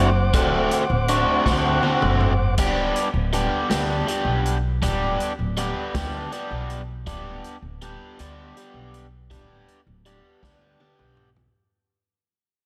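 Psychedelic rock in a slow 6/8 with a hazy, trippy mood, this excerpt is cut from a longer piece and fades out across its full 11.5 seconds, with a dreamy mix soaked in plate reverb. An up-front, double-tracked overdriven guitar plays a bright, flanged riff over a woody, growly pizzicato upright bass, while a vintage drum kit with dark cymbals and a punchy kick adds fills at 1.5 and 10.4 seconds. A reedy combo organ with heavy vibrato holds sustained chords only until 2.6 seconds, as the harmony moves from D7 to G over D.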